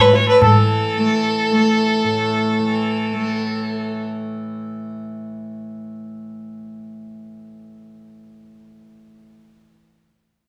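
A bowed violin carries the melody up front, its tone rich and smooth with an even vibrato, though it sits at a slight distance in the space. This brief Hindustani classical fragment, cut from a longer piece, moves at 105 BPM in a straight 5/4 and feels radiant and serene. High-tuned tabla with a short ring and a very quiet, reedy, breathing pedal harmonium appear only in the opening moments, both gone by 0.6 seconds. Beneath them a bright, buzzing tanpura drone shimmers with a softly plucked touch. The violin ends at 4.1 seconds, leaving the tanpura alone until 9.7 seconds. The group plays live together in one studio room with a noticeably wet ambience, and the instruments are tuned to A4 = 438 Hz.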